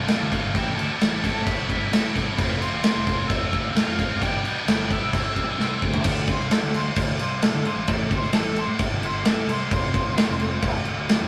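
A big acoustic rock drum kit sits up front in this brooding, angsty alternative rock excerpt from the quiet-loud tradition, its tight kick, medium-tuned snare, toms and crash cymbal carrying a mid-forward, rolled-off sound. Two heavy high-gain electric guitars pick out distorted riffs, one bright and in the background throughout, the other stopping at 6.1 seconds, just after a drum fill that starts at 5.6 seconds. A growly, fuzz-overdriven fingered bass, direct and amped, anchors the low end. A dark octave-fuzz lead guitar carries the melody and moves into a solo from 6.1 seconds as the chords shift from a Dm, Amadd9, F, G and Cmaj7 pattern to a Dm, Am, F cycle. The straight 4/4 groove comes through a rough rehearsal-room recording with moderate booth ambience.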